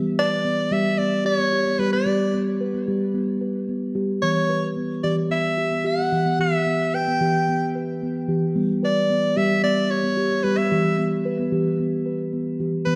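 Steeped in a wet echo-chamber reverb with a cassette-tape grain, this gentle, meditative world-music excerpt sets a round, ringing steel tongue drum, struck with soft rubber mallets, playing mellow arpeggios up front from the start over a G to Em sway, while a bright, punchy soprano saxophone enters at 0.2 seconds with a forceful, jazz-style solo melody carrying light vibrato and a tape echo.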